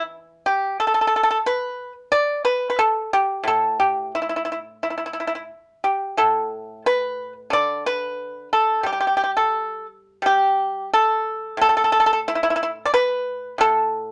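The recording sits in a light reverb, with the pipa placed up front and its tone coming across dry and percussive. This is a short excerpt of Chinese traditional music for solo plucked strings, pastoral and elegant in mood. The pipa plays alone throughout its 14.1 seconds, plucked with fingerpicks and ranging from A2 up to D5 in the A shang mode. The pulse is marked at 89 BPM in 2/4, but the playing moves with a free, rubato feel. At 10.2 seconds the music turns to a new section, which carries the piece to the end of the cut.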